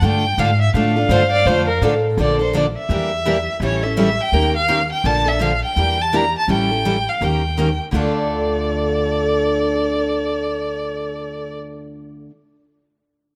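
Acoustic string swing in the jazz manouche style, this short passage cut from a longer piece has a swinging, bittersweet mood over a brisk swung 4/4. A smooth, bowed violin carries the melody up front with an even vibrato, joined briefly at 1.1 seconds and again from 7.9 seconds by a second violin line played sul tasto, its tone dark and woody. Two picked steel-string acoustic guitars supply the accompaniment: one has a warm concert sound with audible finger squeak, while the other, a bright, full-bodied jumbo, sits in the background. A pizzicato upright bass underpins the group with a growly, thumpy tone. The harmony returns to minor after a passage of major-seventh, half-diminished and dominant chords, and both violins stop at 11.6 seconds in this rough home demo mix, set in light studio reverb.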